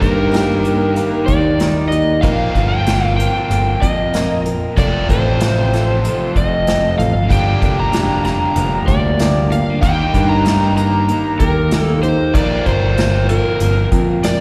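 A straight 4/4 groove from an airy, polished acoustic drum kit played with bundle sticks, with a punchy kick and a medium-tuned snare, carries this dusty, wistful folk and heartland rock passage. Over it, an up-front overdriven slide guitar sings the melody through slapback and tape echo, above a biting, double-tracked overdriven riff guitar, a parlour steel-string acoustic picked in the background and a direct, amped electric bass up front. The band sounds like a live gig heard through the venue's PA with recital hall reverb, as the chords move from Eb through Bbsus2, F and Gm7 and back again.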